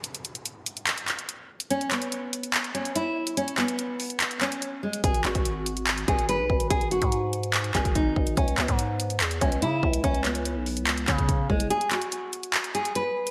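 A half-time trap groove in 4/4 drives this dark, hard-hitting hip hop excerpt. Its electronic drum kit of handclaps, bright hi-hats and a hard-clipped kick sits up front with a tape-warm edge and gated reverb. A brief electronic downlifter opens the piece before a fingerpicked nylon-string guitar takes the melody, its fresh strings giving a deep classical tone carried by delay. The opening stretch plays as a break, and at 5.0 seconds a growling 808-style bass arrives, buzzy and saturated with a fast attack and a decaying tail. The harmony moves from chordless passages to a C#5 chord, and at 11.7 seconds the bass stops and the kick drops out for the closing moments. A lush hall reverb and bright 1980s-style digital production lend the track a polished, spacious sheen.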